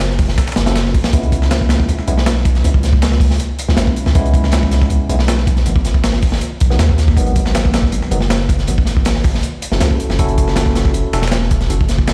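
A crunchy, gritty breakbeat kit with a tight kick and rolled-off top drives this atmospheric, nostalgic drum and bass and jungle cut, backed by a compressed, sampler-style break with filtered hats and a high-tuned snare tucked into the background. A deep, mellow 808-style bass with tube saturation sustains up front. A clean tine electric piano enters at 0.7 s with stabs through dub echo over chords moving from F#m through C#m7 and G#m7 to F#m7, all sounding as if played on a big sound system in a bare stone room.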